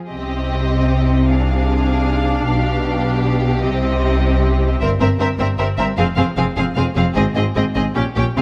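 A quick classical-period movement for string orchestra in 3/4 at 153 BPM, this restless, stormy passage is cut from a longer piece and moves from C minor into F minor at 4.8 s. A distant, lush first violin section carries the melody over a focused second violin line, while violas fill the accompaniment with vibrato. Cellos with a smooth top and an up-front, even double bass section anchor the bass, all bowed and set in a moderate recital hall reverb.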